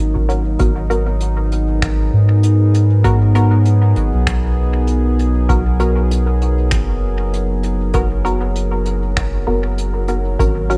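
A lightly swung 98 BPM groove in 4/4 drifts along, with a deep, tape-softened electronic kick sitting in the background and a distant, roomy brush kit of finger snaps and hi-hat entering at 0.3 s, its dull top end trailing dub echo. Up front, a round, soft sub bass anchors the G# minor harmony as it settles onto G#m9 at 0.6 s, while muted sawtooth chord stabs pluck and decay through chorus, tape grit and echo. A smooth, warbling vintage pad of detuned, wave-folded tones holds sustained chords beneath it all, giving this meditative ambient dub fragment its hazy glow.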